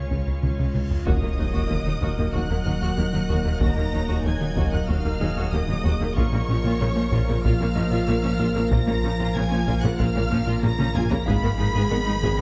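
Close, detailed and lightly reverberant, this futuristic, relentless hybrid orchestral and electronic film cue in Eb minor moves at 94 BPM, where a bowed, vibrato-rich studio violin section carries the melody over a focused second violin line, intense violas, and a very quiet, smooth bed of cellos and double basses. A rubbery, wave-folded square bass riff and a thick, saturated sub bass drive underneath quiet hard-stick taiko drums, while a calm organ-like pad with ensemble chorus and a faint, brilliant concert grand piano add texture. A huge reverse cymbal and sub drop lands with an impact at 1.1 s, where a dark French horn section enters with sustained chords, and a taiko fill returns at 10.6 s before the harmony moves to Abm at 11.3 s.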